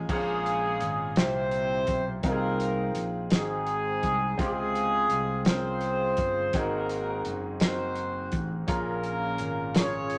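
Slow gospel in 6/8 at 56 BPM, uplifting and reverent, this short excerpt from a longer piece sets a mellow, tight horn section up front on the melody, doubled in octaves with a smooth top. A clear baby grand piano with audible action noise and long sustain accompanies, while a punchy fingered electric bass anchors the low end and a soul drum kit, entering at 0.1 seconds, brings a fat snare, dark cymbals and a pumping room feel. The harmony moves from Bbm7 through C7, Fm7/C and Ab7 to a lingering Dbmaj7, then back through Ab7 to Bbm7, all set in a wet studio reverb.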